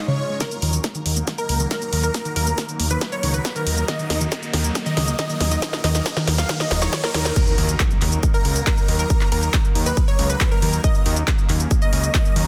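A dense, heavily limited master with light reverb carries this soaring, bittersweet uplifting trance excerpt, where a huge, euphoric supersaw lead with phaser and delay sings the melody over a lush unison pad's sustained chords, a detuned unison pluck with a filter sweep plays arpeggios through the build-up until 7.3 seconds, a very quiet analog pluck adds a round second line, faint electronic swell, riser and impact effects frame the build with the impact landing on the drop at 7.4 seconds, a fat sawtooth bass pumps under sidechain, and an up-front, layered kick sits beside a dry, overdriven analog drum machine of snare, handclaps, hi-hat, shaker and crash cymbal.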